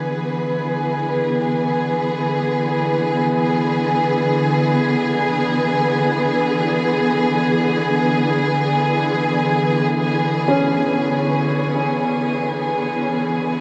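Ambient and weightless, this excerpt from a longer piece rests on lush, bowed string chords with vibrato held up front, while a glassy, drifting harmonics texture with chorus sits calmly in the background, and a soft, felt-muted upright piano with audible action noise enters at 10.5 s with mellow arpeggios through a diffuse ambient delay, all washed in shimmer reverb and the warble of worn cassette tape.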